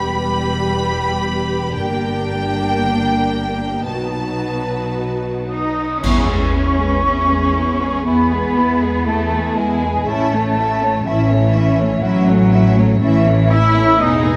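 A smooth, lightly vibrato violin section carries the melody in this tender, moving cinematic film-score passage at 55-62 BPM with a rubato feel, over dark, woody second violins, distant soft-attack violas, lush cellos and warm bowed double basses, while a cymbal swell with bright clash cymbals and concert bass drum enters at 1.8 s, pure, mellow flutes join at 5.5 s, the harmony settles into E major at 6.0 s with an ensemble accent, and a wet scoring-stage reverb lends the whole a spacious bloom.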